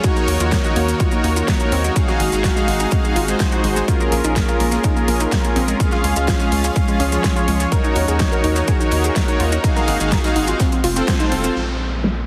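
Driving and expansive, this progressive house excerpt at 125 BPM in Bb minor runs on a punchy, overdriven electronic kick up front and a big-room dance kit with a huge snare and metallic, filtered hats, backed by a very quiet acoustic arena kit and grainy maracas, while a round, deep analog bass with tube saturation pumps beneath from 0.3 seconds. Smooth supersaw stabs sit forward with sidechain pumping and digital delay, a detuned unison pluck spins arpeggios in the background, and a very quiet, bright, morphing wavetable pad with phaser holds sustained chords through a progression that moves from Ebm7 and Ab7 to Bbm7 and Db. After a band accent at 11.1 seconds, a downlifter closes the passage from 11.6 seconds, all set in a lush hall reverb with a heavily compressed, radio-style sheen.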